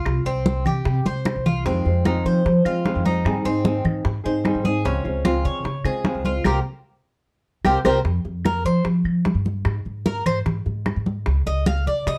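Driven by a straight 4/4 pulse at 150 BPM, this danceable, warm slice of Cuban son and guajira in F minor rides on damped, thick-skinned congas, tight high-tuned bongos and woody claves sitting in the background, with a pizzicato upright bass up front beneath a bright, metallic Cuban tres arpeggiating over chords such as Fm7, Abmaj7 and Dbmaj7. A small, fingerpicked nylon-string guitar with old strings joins at 1.6 seconds and drops out at 8.0 seconds, as a drum fill and band accent lead into a tres solo from 8.1 seconds over Fsus2, a chordless stretch and Dbadd9. The production is dark with light reverb, keeping the hand percussion close and dry.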